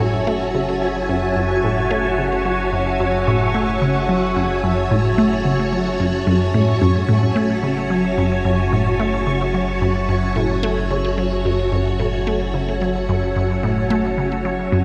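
The recording sits in a dreamy, lush hall reverb with a long 2.6-second tail, giving this short excerpt of ambient, sequencer-driven space music a cosmic, expansive mood. A vintage string machine sits up front with a full ensemble sound, holding sustained sawtooth chords with a sub octave, a slow attack, a moving notch and an ensemble chorus. Beneath it, a resonant blip pluck carries the riff in a lower register, its squelchy, wave-folded tone built from detuned pulse, sawtooth and triangle waves with a noise layer, snapping open with a fast attack and short decay through phaser and delay. A round analog bass, deep and dark, mixes sine and sawtooth into a low sustained foundation set well beneath the other two parts. The whole 14.8 seconds rests on a single F#m7 chord in a straight 4/4 feel, with each part playing throughout.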